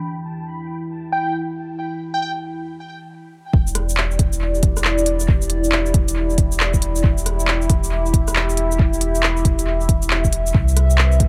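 A dark, detuned analog pad with chorus, phaser and sidechain pumping opens this wistful, rainy future garage excerpt under a filter sweep, a brief plucky unison lead with cassette-tape dub echo flickers in at 1.1 seconds, and after a short break the round sub bass and soft electronic kick arrive at 3.5 seconds, joined at 3.7 seconds by a crisp, tape-toned drum kit of handclaps, hi-hat, rim click and shaker in a swung, echo-heavy, low-passed mix.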